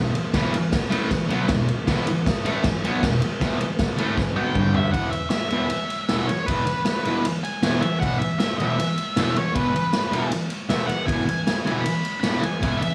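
A thick, bright, double-tracked fuzz guitar opens this raw, swaggering garage rock excerpt, picking a low, up-front riff over E5 that moves to G5 before settling on E. A raw acoustic drum kit joins almost at once at 156 BPM in a straight 4/4, with a punchy kick, a medium-tuned snare, ride cymbal and toms, all sounding gritty and saturated with a rolled-off top and the roomy character of a stone room. A drum fill at 4.2 seconds leads into the second section, and from 4.4 seconds a dark, distorted octave-fuzz lead guitar picks a higher melody that sits a little behind the riff. A modest small-room reverb gives the E major cut a tight, live-sounding space.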